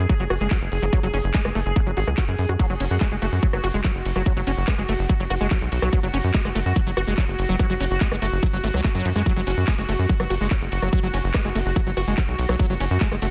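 Psychedelic trance at 144 BPM in a straight 4/4, this short excerpt feels hypnotic and alien, holding to a single F#5 chord throughout its 13.3 seconds. A tight electronic kick drum sits up front with a tape-tinged, layered punch, joined by a drum kit of crisp hi-hats, handclaps, ride cymbal and rim clicks, both carrying studio reverb. Underneath, a punchy sequencer bass built from sawtooth and square waves drives forward with fast-attack, decaying filter plucks. Above it, a squelchy, resonant acid bass riff winds through a filter sweep, smoothed by chorus and trailed by dub echo, with sidechain pumping tying it to the beat. A bright, detuned unison pad of triangle tones holds sustained chords with a slow attack and long release, pulsing in tempo-synced gating and pumping under chorus and its own reverb. The overall mix is dry, dense and heavily limited in a modern style.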